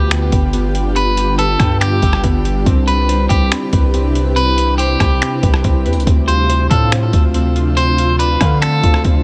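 A half-time 4/4 groove at 141 BPM sets up this melancholic, hazy cloud-rap excerpt in D dorian, built on a muffled, pitched-down sampler-style drum kit of thumpy kick, rim click, hi-hat and finger snaps, sitting up front beside a deep, sine-toned 808-style bass with long decaying notes. Over chords moving from G7 to Cmaj7 at 2.7 seconds and Dm7 at 6.1 seconds, an ethereal detuned pad holds sustained chords with ensemble chorus, tremolo, reverb and sidechain pumping, while warbling lo-fi synth keys spin nostalgic arpeggios through chorus and delay. A twangy electric guitar at the edge of break-up carries the melody with delay, all set in a digital ambience.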